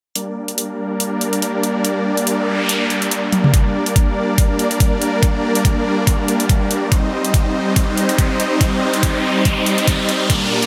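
Huge, detuned supersaw chords pump up front under a low-pass filter sweep, moving from G minor to C minor over overdriven dubstep drums with bright hats and toms, while a noise sweep enters at 2.2 seconds and an overdriven, knocking electronic kick joins at 3.5 seconds as a riser builds through this chaotic, heavy half-time wobble dubstep passage in light reverb.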